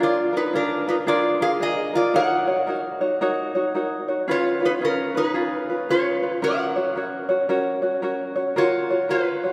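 A lilting swing on the eighth notes at 112 BPM in 4/4 carries this dreamy, sunny Hawaiian passage in F# major, cut from a longer piece and moving from A#7 through D#m7 and C#7 to a resting F# and F#maj7. Up front, a metal-body resonator slide guitar sings the melody with a metallic, nasal voice, played with fingerpicks, while a tenor ukulele fingerpicks a bright, light accompaniment through the full 9.5 seconds. Both are bathed in a wet church reverb with a long 3.7-second tail, giving the intimate pair a spacious, hall-like glow.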